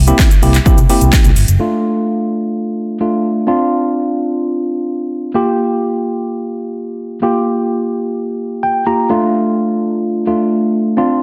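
A worn, slightly out-of-tune tine electric piano, played through a combo amp and sitting up front with sidechain pumping, carries this summery, euphoric dance-pop excerpt, lingering on its own after 1.6 s and adding a fill from 8.4 to 9.1 s. It opens with a brief drop where a dark, round, foam-muted vintage electric bass, also pumping, meets an overdriven, layered house kit of punchy kick, cracking snare, metallic hats, handclaps and shaker. Chords move from C7 to F6, Dm7 and Gm7 under a lush hall reverb and a dense, heavily limited modern master.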